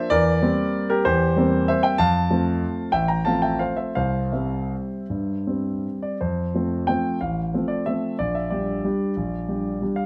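A lilting 3/4 waltz pulse, pushed and pulled with rubato between 153 and 202 BPM, carries this playful, graceful classical piano piece in F major, tuned to A4 = 441 Hz. A solo concert grand, up front with a warm tone and deep bass, spans A1 to Bb5 under light reverb. A new section arrives at 6.2 seconds before this fragment of a longer work breaks off at 10.1 seconds.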